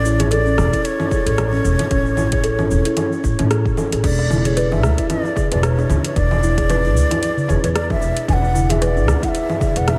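Organic downtempo at 113 BPM in E mixolydian, this peaceful excerpt drifts through a dreamy, reverb-soaked mix, moving from Amaj7 to E7 over a lightly swung sixteenth-note feel. A breathy low ney carries the melody with vibrato and a diffuse ambient delay, while a kalimba's short, dark thumb-plucked arpeggios share that delay and a woody, thumpy upright bass sits up front with sidechain pumping. Overdriven deep house drums with metallic hats, congas, cabasa and rim clicks come in at 0.1 seconds and are joined by a deep electronic kick from 0.7 seconds, and a very quiet, close darbuka played with soft hands enters at 4.2 seconds.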